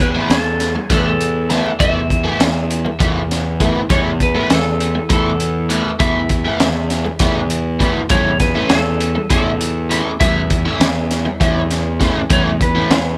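A crunchy breakbeat drum kit sits up front with a punchy kick, high-tuned snare and gritty, saturated tone in this hazy, hypnotic psychedelic rock excerpt, moving at 200 BPM in 7/8 over a chord shift from Esus4 to A/E at 8.1 seconds. A bright, double-tracked overdriven electric guitar riff with flanger and a round, fuzzed picked bass drive alongside it, while a clean lap steel played with fingerpicks and slide carries the melody through digital delay. A very quiet evolving analog drone with chorus enters at 1.7 seconds, soft-handed congas add thin-skinned percussion, and a small room reverb frames the sound.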